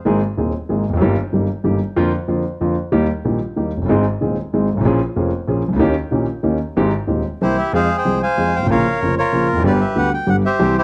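Tense and sultry, this short tango excerpt in 3/4 moves with a rubato feel, stretching and pulling its phrases. A warm concert grand piano carries the accompaniment from the opening, its intimate, smooth tone reaching into deep bass, with the action noise of the instrument audible up close and a vintage character. The harmony starts in A-flat major before turning to F harmonic minor around 7.7 seconds. Just before that shift, at 7.4 seconds, a reedy, mid-forward bandoneon enters up front to take the melody, adding a dark edge over the piano until the cut at 10.8 seconds. Light reverb and a dark, warm production give the recording a close, intimate atmosphere.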